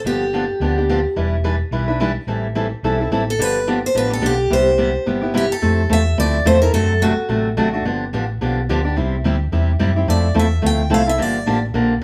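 A lively, wet room sound frames this short cut from a longer jazz manouche performance, with the band playing together live and a studio reverb giving the players a touch of air. At a brisk 216 BPM in swung 4/4, the music has a charming, buoyant feel, moving from C major into F major at 5.6 seconds as the tune passes from its opening section into the next. A dark, round hollow-body electric bass, fingered and amped, carries the low end throughout. Two picked steel-string acoustic guitars sit up front. One is a bright, boxy parlour guitar with fresh strings that plays the melody in short phrases, the longest running from 3.3 to 7.3 seconds. The other is a darker concert guitar holding down the accompaniment, with audible finger squeak, over changes such as G7, Am7, Cmaj7 and Fmaj7.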